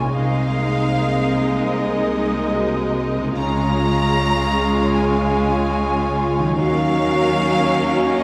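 A hopeful, uplifting cinematic passage in Db major at a rubato 75 BPM opens with the full orchestra at once: a lush violin section carries the melody with soft-attack vibrato, while a second violin line, an airy silver flute, a clear, distant oboe and a punchy clarinet weave supporting lines around it. A smooth viola section provides accompaniment, a dark French horn section holds sustained chords in the background, and a ringing, fingerpicked concert harp plays arpeggios over cello and double bass sections anchoring the bass. The chords move from Abadd9/C to Db at 3.4 seconds and Ebm7 at 6.6 seconds, all heard from further back in a reverberant scoring stage, in a short cut from a longer piece.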